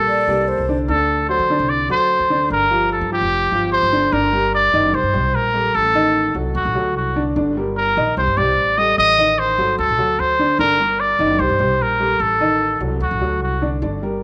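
Lightly reverberant studio sound with a softly rounded top end frames this nostalgic, sultry Latin excerpt at 148 BPM in G minor, where a vintage, up-front trumpet with light vibrato and scooped notes sings the melody over dark, boxy baby grand piano arpeggios with audible action noise and a woody, thumpy pizzicato upright bass on gut strings, while an airy, hollow concert flute slips in a brief second line from 0.1 to 0.8 seconds before the harmony shifts to G harmonic minor at 4.1 seconds and cycles through Gm, C5, Am7b5 and D7.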